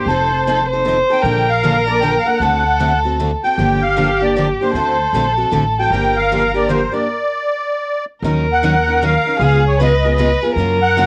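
A swung 3/4 groove at 154 BPM drives this fiery, virtuosic stretch of jazz manouche in G minor, cut from a longer piece, with a full stop from 7.1 to 8.2 seconds before a new section begins. Up front, a shimmering, reedy musette accordion carries the melody while one bowed violin with soft attack, vibrato and portamento sings an expressive second line. Two bright picked steel-string acoustic guitars, a full-bodied jumbo and a boxy parlour set in the background, both with finger squeak, provide accompaniment, and a woody, thumpy pizzicato upright bass on gut strings anchors the low end. Light reverb frames this home recording, and every part except the bass carries a cassette tape colour.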